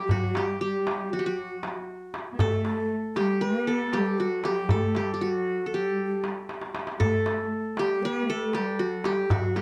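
Turkish makam ensemble music in a stately 9/8 at 234 BPM counted in eighths, cut from a longer piece, with a bright fingerpicked qanun carrying the melody up front, a breathy, hollow low ney with vibrato and a lush bowed cello section sharing a second line beneath it, and a crisp, deep metal-shell darbuka that plays a short fill at 6.5 seconds, all captured in a dry, close 1970s-style studio sound with light reverb and a faint mains hum.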